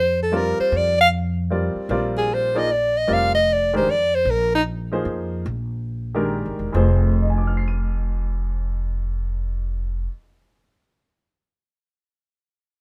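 A soprano saxophone and a pizzicato upright bass open this cool, hypnotic modal jazz excerpt together in a swinging three-beat metre, with a clear upright piano joining a moment later. The saxophone carries the solo melody, close-miked and up front, with a warm tone, soft attack, light vibrato and scooped notes, and its line ends at 4.6 seconds. Beneath it, the acoustic bass sounds woody and growly on steel strings, while the piano accompanies with short-sustained notes. The music slows from 4.3 seconds as the harmony moves from Fsus4 through Bb9sus4, settling onto Fm at 6.8 seconds, where a new section begins with bass and piano. The dry, intimate sound keeps all three instruments near and present.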